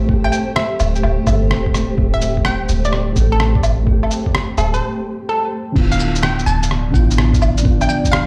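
Bathed in a large studio reverb as if played through a big system in a bare room, this melancholic, ghostly future garage fragment swings as a thumpy, muffled electronic kick and a tape-warm, pitched-down sampler kit of cabasa, crash, rim click, shaker and woodblock sit alongside a deep, round 808-style bass, while a boxy, felt-muted upright piano with dub echo and a blurred granular cloud pad pump beneath a nasal, hollow square pluck melody with chorus and tape echo, with a short break at 4.8 seconds before the harmony shifts at 5.8 seconds.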